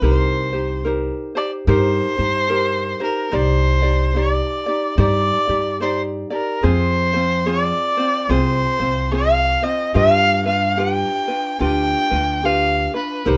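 A bowed erhu carries the melody up front, its earthy tone smooth at the top and shaded with light vibrato and portamento, in this sunny, relaxed Hawaiian piece cut from a longer work. A bright, fingerpicked ukulele plays the light accompaniment, while a woody pizzicato upright bass on steel strings sits up front beneath it, the three moving with a gentle swing over Cm7, Cmadd9, Fm and G7. The trio plays together throughout the 13.4 seconds in a moderate studio reverb.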